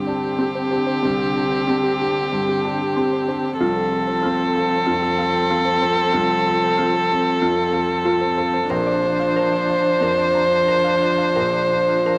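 Tender and intimate, this short neoclassical passage for piano and strings moves at 94 BPM in 4/4 with a rubato feel, set in F major and cut from a longer piece. Up front, a single muted violin carries the melody con sordino, its veiled tone touched with vibrato, while a muted cello plays a soft-edged second line below with light vibrato. A felt-muted upright piano supplies mellow accompaniment with audible action noise, joined by a muted viola bowed in the background. Beneath them a dark analog pad holds very quiet sustained chords with a slow attack and long release, and from 0.1 seconds a glassy wavetable pluck spins crystalline arpeggios in the background, coloured by chorus and slapback echo. The harmony moves from Csus2 to F/C at 3.6 seconds and on to Bbadd9 at 8.7 seconds, all within a light reverb.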